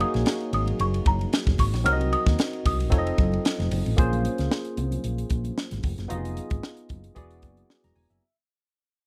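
Crisp fusion drums with a high-tuned snare and dark cymbals drive this slick, bittersweet 1980s jazz-funk pop excerpt in Bb minor at 113 BPM, where a woody soft-mallet marimba carries the melody until 3.7 seconds over a barky, chorused tine electric piano, a round hollow-body bass and very quiet bright congas, all captured in a dry, close studio sound before fading out from 4.0 seconds.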